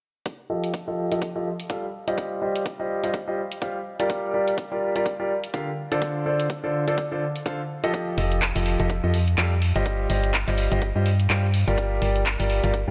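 A dreamy, reverb-soaked mix opens this uplifting, joyful piano house excerpt, where a clear, up-front concert grand piano riff with long sustain and a filter sweep rides pumping sidechain and analog delay over jazzy chords such as F9 and Gm7, driven by an overdriven electronic kick and punchy drum-machine handclaps and hi-hat, until a round, dark FM bass enters at 8.2 seconds.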